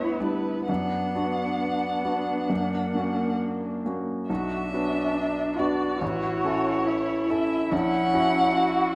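In this solemn, melancholic B minor fragment of a slow romantic piano quartet movement at 60-73 BPM with rubato, a clear baby grand piano with audible action noise plays alongside a veiled, con sordino muted violin singing the up-front melody with vibrato and portamento, a dark muted cello carrying a distant second line, and a soft-attacked muted viola filling in close accompaniment, all four parts playing throughout the 8.9 seconds within a recital-hall reverb.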